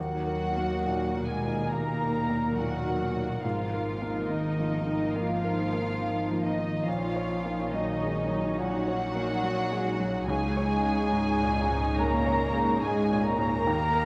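Sorrowful and moving, this cinematic film-score cue moves at a rubato 70 BPM in 4/4, an excerpt cut from a longer piece. Muted violins carry the melody with a veiled, con sordino sound and gentle vibrato, while a pure, straight-toned flute, a mellow clarinet, a distant cor anglais and a second, background violin line add quiet supporting voices. A clear baby grand piano, intimate enough that its action noise is audible, provides the most present accompaniment with long sustain, joined by a lush but very quiet viola section. A very quiet French horn section holds soft sustained chords, and dark, muted cellos and double basses anchor the bass. The harmony drifts through Ebm, Absus2, Gb6/Bb and Dbsus2 over 14.1 seconds, all bathed in the generous reverb of a scoring stage.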